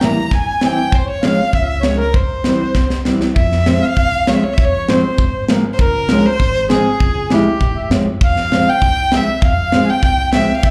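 Klezmer at 99 BPM in 2/4, soulful and bittersweet, this live club excerpt has a clear, focused violin carrying the bowed vibrato melody over a reedy, round accordion second line, both touched with slapback echo, while a dark, thumb-plucked nylon-string guitar accompanies, a woody pizzicato upright bass holds the low end, and a tight drum kit with high-tuned snare plays a fill from 2.8 to 3.4 seconds leading into the second section as the chords move from C and Db toward F minor, all heard through the venue's PA with light club reverb.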